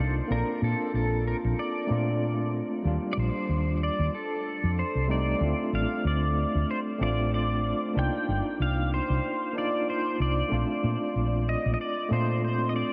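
A relaxed, blissful sunset chillout passage in Bb major opens at 94 BPM with all three parts together: an overdriven, gritty tine electric piano with fast tremolo and delay comps through a combo amp, while a dark, round fretless bass with a woody, hollow-body tone sits up front underneath. Over them, a clean, compressed pedal steel guitar carries the melody with slide and volume swells, its fingerpicked notes coloured by analog chorus and delay. A lazy 16th-note swing drifts through Bbmaj7, Ebmaj9 and F7, then Dm7 and Cm11 from 5.4 seconds, all inside a dreamy mix soaked in a huge ambient reverb, in a fragment cut from a longer piece.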